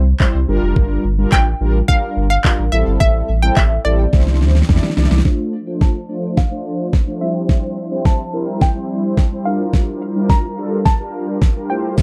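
A smooth, electronic R&B drum kit sits up front in this confident, driving dance-pop excerpt, its knocking kick and fat snare joined by handclaps and shaker, with a small-room character to the sound. A deep, round sine sub bass pumps beneath it until 5.2 seconds, while a mellow synth brass part, dark and detuned with chorus and phaser, carries the accompaniment over chords moving from Gm7 through Am7 and Cadd9 to Dm7, C and back to Gm7. On top, a bright analog pluck mixing sawtooth and square waves with a noise layer plays the melody in decaying notes, coloured by chorus and tape echo. A drum fill arrives at 4.1 seconds and leads into a build-up with a filter sweep, and at 5.7 seconds an ethereal, airy pad of detuned unison voices fades in softly with ensemble chorus and its own reverb. The overall recording is dry and close, in the manner of a 1970s studio.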